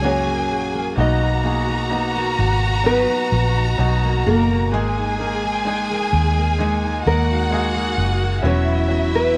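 Tender and emotional, this slow pop ballad excerpt in B major moves at 64 BPM in a straight 4/4, drifting from F# through Bmaj7 and G#sus2 to Esus2 across its 9.4 seconds. A thumb-plucked classical nylon-string guitar carries the melody while a lush, close violin section sings a bowed second line with expressive vibrato, and a clear, polished baby grand piano fills in the accompaniment. Underneath, a full-bodied jumbo steel-string acoustic guitar picks arpeggios in the background, a round, punchy, foam-muted vintage electric bass sits dark and up front, and light reverb lends a small-room ambience.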